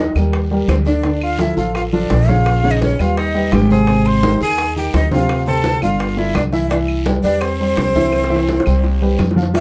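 A dark, lightly reverberant production frames this sophisticated, sunny Afro-Cuban jazz excerpt at 170 BPM, where a breathy flute with vibrato carries the melody over a mellow tenor saxophone second line, an intimate baby grand piano with audible action noise supplies accompaniment, a thumpy gut-string upright bass plays pizzicato up front, and ringing congas, tight high-tuned bongos, woody claves and raspy guiro fill out the percussion, with a drum fill from 8.1 to 9.5 seconds.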